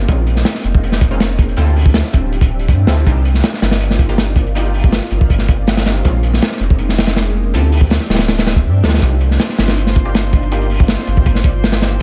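A crunchy breakbeat drives this frenetic, raw drum and bass and jungle excerpt in straight 4/4. The acoustic kit sits up front, its kick, snare and hi-hat saturated and gritty with a rolled-off top and a tight, mid-forward punch. Beneath it, a soft dub sub bass holds deep, round, sustained notes that anchor minor eleventh chords moving from Bbm11 to Dm11 to Cm11. In the background, an orchestra-hit-like synth stab adds bold, detuned sawtooth bursts with a noise layer, colored by reverb, phaser and dub echo. At 9.0 s, a calm, glassy texture of drifting overtones slowly fades in high above, softened by chorus and reverb. The overall mix is dry and loud, with the drums the loudest part.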